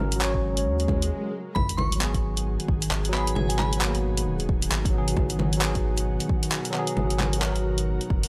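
A swung 16th-note groove at 133 BPM in 4/4 drives this ghostly, wistful future garage excerpt in G# minor, where a tape-warm deep house kit of bongos, handclaps and hi-hat sits up front, joined by a deep electronic kick, over a round sine sub bass. A bright tine electric piano with 12-bit sampler grit and delay and an ethereal, warbling detuned pad both pump under sidechain, a background swell and sub drop break at 1.1 seconds into an impact at 1.6 seconds as the chords move from F# to G#m7, and a glassy FM synth bell with chorus and delay sings a brief melody from 1.5 to 4.2 seconds, all in a moderate recital hall reverb.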